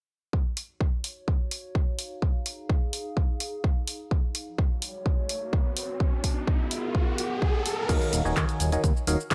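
A digital ambience surrounds this energetic, soulful piano house excerpt at 127 BPM in Eb minor, where an up-front layered electronic kick and a tape-tinged analog drum machine with crash, handclaps, hi-hat and shaker drive under a dark, nostalgic, warbling lo-fi pad that fades in from 0.3 seconds with chorus and sidechain pumping, an electronic riser builds from 5.2 seconds, and at 7.9 seconds a biting, bright, percussive FM electric piano riff with phaser and digital delay arrives alongside a fat, detuned, tube-saturated analog bass.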